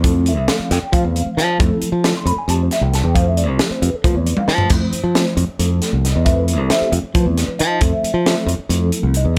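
A growly fingered electric bass sits up front with a direct, modern tone, carrying the low end of this slick electric jazz fusion cut from a longer piece. The groove moves in 7/8 at 270 eighth-note beats per minute with a straight feel, resting on an Fmaj7 chord in F lydian for a bright, polished mood. A crisp acoustic drum kit, captured in a small, pumping room, pairs a punchy kick with a high-tuned snare, hi-hat, splash cymbal and toms, all with a gritty, saturated edge. The kit plays a short fill from 4.4 to 4.7 seconds and drops out at 9.2 seconds. A mellow tine electric piano supplies clean accompaniment, colored by a phaser and heard as if through its built-in speakers. Light reverb softly rounds out the mix.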